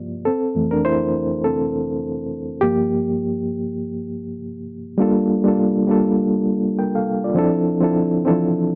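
A reedy, clean electric piano with fast tremolo plays alone through its built-in speakers, sitting up front in a dry, close 1970s-style booth sound as it moves from Fmaj7 through Gm7 to Dm7 in this short, smooth and cinematic soul fragment with a light sixteenth-note swing.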